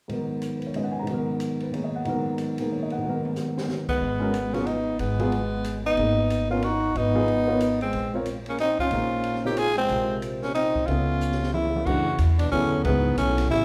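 A concert grand piano with deep bass, long sustain and audible action noise opens this cool, spiritual modal jazz piece in a swinging three. An open acoustic kit with dark cymbals, a high-tuned snare and a boomy kick plays alongside it, adding a fill at 3.0 seconds. At 3.9 seconds a raspy, growling tenor saxophone takes the up-front melody over a close-miked trombone second line with light vibrato and scooped notes, and a woody pizzicato upright bass joins at 4.0 seconds, as minor ninth harmonies pass through an altered dominant to a closing minor eleventh, set in the wet reverb of a recital hall.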